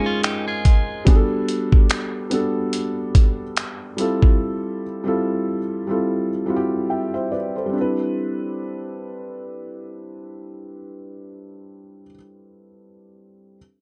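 Dark, nearly reverb-free and intimate, this tender, romantic contemporary R&B excerpt at 72 BPM with a swung 16th feel opens with the soft, boxy felt-muted upright piano laying down mellow maj9 harmony, moving from Dbmaj9 through Gmaj9 and Fmaj9 to Cmaj9. Alongside it, a clean, picked electric guitar arpeggio through delay stops at 1.0 s, while a gritty, compressed sampler-style soul kit of finger snaps, hi-hat and thumpy kick sits up front until 4.4 s, after which the piano carries on alone.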